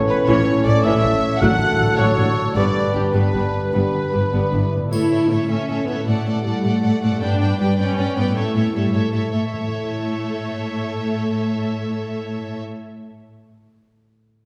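A wet concert hall reverb sets this soaring, triumphant heroic adventure score further back in the room, cut from a longer piece in a straight 6/8 at 104 BPM in A mixolydian, moving between A, D over A and G. Lush violins with vibrato carry the melody and a second line until 12.6 s over dark, woody violas and rich cellos, while a ringing, thumb-plucked harp plays arpeggios throughout. Through the opening 4.9 s, present French horns and a bright, very quiet trombone section hold sustained chords under mellow trumpet stabs, a clear, distant double bass anchors the low end, and a hollow flute and vintage-toned clarinet add second lines; close, dry timpani strike briefly early on and again from 9.5 s, and a triangle chimes briefly as the horns drop out.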